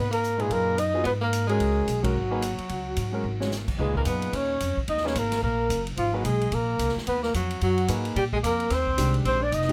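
Cool and hypnotic, this modal jazz passage, cut from a longer piece, swings briskly at 220 BPM in 4/4, with a veiled, bucket-muted trumpet carrying the melody with vibrato and scooped notes over a clear tenor saxophone second line, a woody pizzicato upright bass placed up front, a big-band drum kit with a punchy kick that adds a fill at 3.2 seconds, and a concert grand piano accompanying with deep bass from 0.4 seconds. The band hits an accent together at 2.0 seconds before settling into G# dorian at 3.8 seconds amid light reverb and close, detailed miking.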